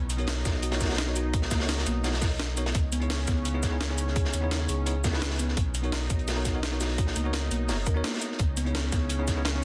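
A lush, detuned sawtooth pad and a round sine sub bass open this rolling, dreamy slice of liquid drum and bass, the pad's sustained chords warbling with chorus and pumping against a sidechain while the deep bass sits up front. Two drum kits come in at 0.1 seconds: a crunchy, saturated, mid-forward breakbeat kit with filtered hats and a rolled-off top, alongside a pitched-up, compressed sampler-style jungle kit of hi-hat, shaker and snare that carries the grit of a large room. A bright, bell-like tine electric piano adds clean, direct accompaniment through a digital delay, and a tight, overdriven electronic kick lands from 0.5 seconds. Tucked in the background, a dark, thumb-piano-like FM pluck with a noise layer plays gentle arpeggios through chorus and tape echo. The harmony alternates between Bmaj7 and C#m7, framed by light digital ambience and a dense, heavily limited modern master, in what is clearly a section cut from a longer piece.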